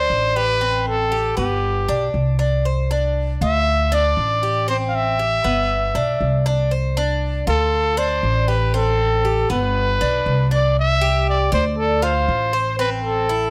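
A dry, close 1970s-style studio sound with light reverb frames this danceable Cuban son and guajira excerpt at 118 BPM in C major: a breathy, whispered trumpet with vibrato and slapback echo carries the melody up front, a bright, metallic tres picks arpeggios on its double strings, and a woody, thumpy pizzicato upright bass on gut strings holds the low end as the chords cycle through Am7, G and Csus2 before a new section arrives at 10.8 seconds.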